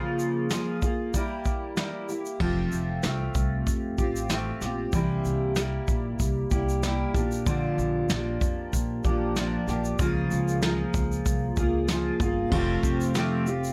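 Heartfelt and carefree, this short acoustic pop excerpt moves with a gentle, lightly swung 4/4 lilt. A full-bodied, double-tracked steel-string acoustic guitar opens the piece, fingerpicked on a jumbo with fresh strings and placed up front. A vintage brush kit joins almost at once, mid-forward in a studio room, with dark cymbals, a medium-tuned snare, a punchy kick, a shaker and a rolled-off top. A thumpy, woody pizzicato upright bass enters at 2.4 seconds as the harmony settles onto Fadd9 and drifts through C7, Bb6 and Db6. At 12.5 seconds a mellow, very quiet upright piano with long sustain slips in, and moderate studio reverb gives the whole a warm, intimate glow.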